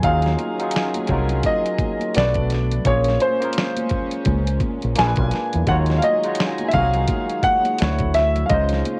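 This short cut from a longer R&B and neo-soul piece has the worn sound of a home cassette recording in a modest booth, smooth and soulful at 85 BPM in 4/4 with a swung sixteenth-note feel. A clear concert grand piano carries the melody between C5 and Ab5, set in plate reverb and tape coloring, while a barky tine electric piano, lightly overdriven through a combo amp, fills in the accompaniment beneath it. A dark, reedy studio string section with light vibrato and a gut-string, period-style tone holds sustained chords far in the background. Up front, a deep, round, punchy fingered electric bass anchors the low end until 8.8 seconds, alongside a gritty, compressed sampler-style kit with a thumpy kick, medium-tuned snare and hi-hat. Bright, high-tuned congas played with soft hands join at 0.2 seconds from a distant large room, as the harmony moves from Ebm11 through Bm7, Bbm9 and Bb7b9 back to Ebm11 before landing on Dmaj9.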